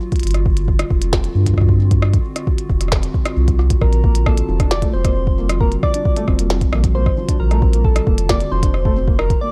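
A round, deep analog bass anchors this glitchy, wistful IDM excerpt at 134 BPM in Bb major, moving from Gm to Bbmaj7 at 3.8 seconds beneath a soft, overdriven electronic kick and a glitchy kit of tiny snare, clicky hats and rim clicks with digital delay. A warbling, nostalgic tape-like pad holds detuned chords with chorus, built-in reverb and sidechain pumping. At 3.8 seconds a gentle, keys-like FM synth lead enters with chorus and delay, joined at 4.0 seconds by felt-muted upright piano arpeggios sitting in the background, all within a dark, dry production.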